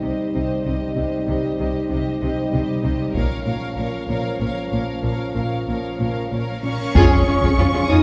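In a slow 6/8 at 64 BPM, counted in dotted quarters, this dramatic, relentless cinematic score fragment moves from Cm to Bbm while a lush violin section sings a focused melody over a soft-attack second violin line, bowed violas, expressive cellos, a rich chamber double bass section and distant, roomy French horns holding chords. Hard-stick taiko drums from a live room drive in at 0.8 seconds. A huge, dark reverse cymbal swells toward a band accent and impact at 6.9 seconds on Db/F, and a moment later a tight, close-miked woodwind section joins very quietly, all set back in a wet concert hall.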